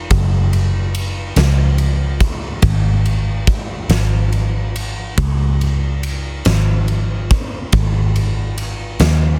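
A pop ballad in a rolling six-eight metre, this short fragment of a longer piece carries a tender, heartfelt mood at an unhurried pace. A vintage electric bass, muted with foam and played with the fingers, holds the low end from the very start, its tone dark, round and amped as it moves between Gb1 and Eb2. A huge arena drum kit enters almost at once, at 0.1 seconds, with a punchy kick, a fat snare and ride cymbal sounding acoustic and up front with a big-room character. The drums sit a little beneath the bass in the balance, and the pair carries the whole 9.4-second passage together. The mix is dry with little reverb, and the master is dense and heavily limited in a modern style.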